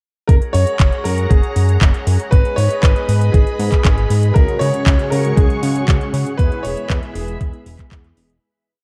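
Italo disco at 118 BPM in 4/4 with a straight feel, set in F# mixolydian, this whole piece has a romantic, playful mood and a dark, warm production with light reverb. A thumpy, sampler-style electronic kick sits up front in a four-on-the-floor pattern, joined by a quieter house drum kit of layered handclaps and metallic closed and open hi-hats in a disco machine beat. Beneath them, a glossy, chorused synth bass built from pulse and sawtooth tones with filter sweeps jumps between octaves, while a lush string machine ensemble holds slow-attack sustained chords with a vintage, moving-notch shimmer. Over this, a clear, intimate baby grand piano carries the melody in hook-like motifs, its action noise audible and its notes trailed by digital delay. At 4.4 s, mellow synth brass arrives with round, brassy held chords and syncopated pushes, coloured by chorus, vibrato and a cassette-tape tint, as the harmony moves through F#add9, G#m, C#sus4 and E before the music fades out from 5.7 s to its end at 8.4 s.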